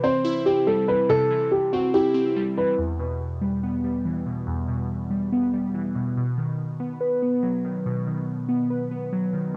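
A dark, boxy grand piano carries a brief melody through the first 2.8 seconds with cassette grit and tape echo, while glassy, airy digital keys with chorus and a filtered sheen keep accompanying until 9.6 seconds over a tense, cold half-time hip hop groove, moving from C to E minor and then B in a small room on a home cassette recording cut from a longer piece.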